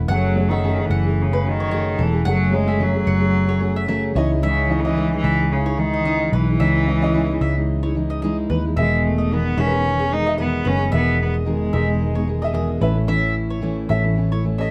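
A clear upright piano with audible action noise, a full-bodied fingerpicked jumbo acoustic guitar and a round, foam-muted vintage electric bass open this heartfelt, sunny acoustic pop passage at 111 BPM in E major with a light sixteenth-note swing, joined almost at once by a woody double-strung mandolin playing arpeggios and a reedy, nasal solo cello that carries the bowed gut-string melody with light vibrato until 12.5 s, while the harmony moves from F#madd9 and C#madd9 to Emaj7 and A from 8.8 s in a close, detailed recording with light reverb.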